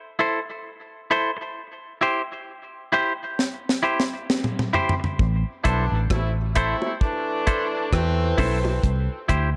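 A semi-hollow electric guitar opens this meditative, spacious dub reggae passage, its clean, compressed tone carrying a tape echo over Am and C chords at a slow 66 BPM in A minor, with a swung sixteenth-note feel. At 3.4 seconds the deep reggae drum kit enters with a fill across hi-hat, kick, rim click, snare and toms, its high-tuned snare and tight kick sounding dry and up front. The break gives way at 5.2 seconds as a dark, foam-muted fingered bass arrives, round and amped, settling on the low A-minor foundation. A clear vintage horn section soon adds a second line with vibrato and its own tape echo, while low-tuned bongos played with soft hands sit far back in the mix, band-limited and echoing. A moderate spring reverb lends the whole a roomy tail, and the fragment closes as the harmony returns to C near the end of this short cut from a longer piece.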